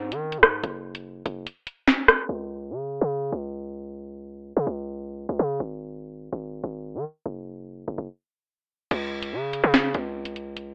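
A hard-hitting 808-style bass opens this menacing, tense drill excerpt, joined almost at once by an electronic, produced drum kit at 145 BPM in 4/4 with a half-time feel. The bass is punchy and heavy, a sine tone with a noise layer, a fast attack and a decaying tail, sitting up front and ranging from F#1 to D#3 as it carries the low end throughout. The drums are also up front, with a sharp snare, bright hi-hats, rim clicks and crash cymbals; the kick drops out shortly before the drums stop at 2.2 seconds. A filter sweep runs through the long middle stretch while the bass holds the track alone, with a break near its end before the drums return at 8.9 seconds. A moderate plate reverb and digital ambience surround the sound, and a low-pass filter gives it a muffled, telephone-like character.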